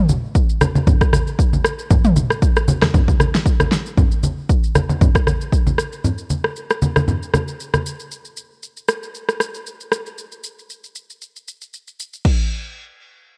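Warm and soulful, this short amapiano cut sets an overdriven, up-front deep house drum kit, with punchy kick, fat snare, rim click, shaker, toms and crash cymbal, against close, hard-handed congas whose bright, thin skins sit low in tuning. The congas drop out at 7.8 s while the layered electronic kit carries on until 12.4 s. The whole recording is dry and carries the worn, warbling pitch drift of old cassette tape.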